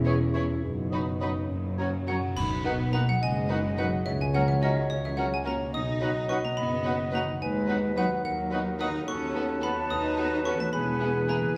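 In a lilting 6/8, this playful, whimsical film cue opens with rich, vibrato-laden violins carrying a quiet melody over harp arpeggios, lush cellos and focused double basses, with airy flutes, a distant oboe and a mellow clarinet weaving second lines alongside soft second violins, faint violas, a dark bassoon and very quiet sustained French horn chords, until a woody, dry xylophone joins the tune at 2.1 seconds and a close-miked tuba plus a bright crash of cymbals and concert bass drum mark a full-band accent at 2.4 seconds, all set in a roomy scoring-stage reverb.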